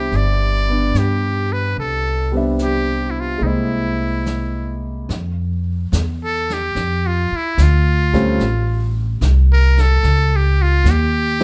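A buzzy, breathy metal-muted trumpet sits up front with a plate-reverb sheen, carrying the melody of this tender, intimate jazz ballad excerpt and stepping into a solo at 5.1 s as the key moves from C major to F major. Beneath it, a clear concert grand with deep bass supplies the chords while a woody pizzicato upright bass sits close and prominent. Distant, roomy brushed drums keep a slow 73 BPM swing in 4/4 within a lightly reverberant space.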